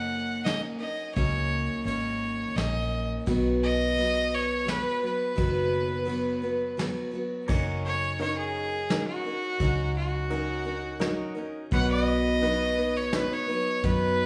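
A clear, up-front fiddle carries the melody over bright, full-bodied picked acoustic guitar and a round, foam-muted vintage electric bass in this sunny, easygoing honky-tonk country waltz at 85 BPM, with soft, dark brush drums entering at 0.5 seconds, the fiddle moving into a solo at 7.5 seconds as a clean pedal steel guitar adds sustained chords with volume swells in the background, and a detuned, jangly upright piano joining at 8.2 seconds, all in light studio reverb.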